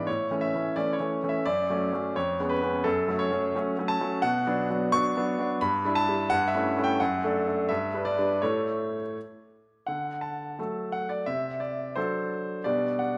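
Cheerful and elegant, this brief classical-period piano sonatina passage in 2/4 moves with a rubato feel on a solo grand piano that sounds brilliant, intimate and polished, sitting up front with long sustain and audible action noise in a moderate recital hall reverb, its harmony drifting from F#m and C#7/E# toward Bm, Em7/G and A7/G, moving into a chordless stretch at 8.4 seconds, then opening a new section on D at 9.9 seconds before the fragment is cut off.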